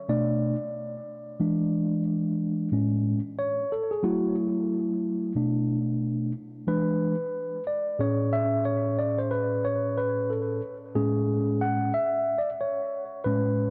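This hip hop excerpt sets a relaxed, cool mood at 91 BPM in 4/4, with a 59% swing on the sixteenths and a key of A major, tuned to A4 = 444 Hz. A mellow tine electric piano carries the whole excerpt alone from 0.0 to 13.7 seconds, ranging from A2 up to F#5. Its tone is warm and clean and sits up front, with the character of sound heard through the instrument's built-in speakers, and it is colored by an analog delay. A short opening passage gives way to a longer section at 2.7 seconds, as the harmony moves through Bm7, E7, Amaj7 and F#m7 before circling back to Bm7, E7 and Amaj7. Light reverb and an echo-heavy mix leave the recording airy and unhurried.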